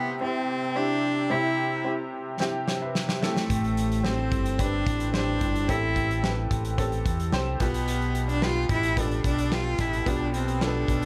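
A rich, bowed solo cello with vibrato sings a bittersweet, dramatic pop melody over a woody, slightly detuned piano with long sustain, moving from C to Am7 to G7; a loose, small-room drum kit with a punchy kick enters with a fill at 2.4 seconds, and a round, fingered electric bass joins at 3.5 seconds, all set in a moderate studio ambience in this fragment of a longer piece.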